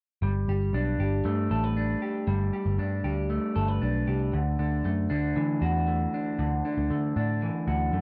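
A cassette-tape recording in a moderate studio room opens this short, bright and youthful slice of jangly indie pop, cut from a longer piece. An up-front electric guitar through a small old amp plays twangy, slightly broken-up picked arpeggios, colored by tape echo and plate reverb, while a dark, round, punchy foam-muted electric bass sits beneath it from 0.2 seconds onward. The harmony moves from Gadd9 to Dadd9 at 4.3 seconds.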